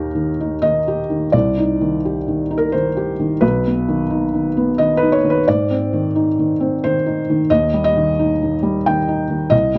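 The recording has a dry, close sound in the manner of a 1970s studio, with a modest booth ambience that keeps the playing near and personal. This is a short neoclassical minimalist piano piece cut from a longer work, tender and hopeful in mood. A felt-muted upright piano plays alone from 0.0 to 9.8 seconds, its tone soft, mellow and vintage, sitting up front in the mix. The phrasing moves in a gentle three-beat metre with a free, rubato feel, spanning the range from B1 up to G5. The harmony passes from Eb through Cm, B and Ab before settling back on Eb at 7.5 seconds, giving the passage a quietly reassuring shape.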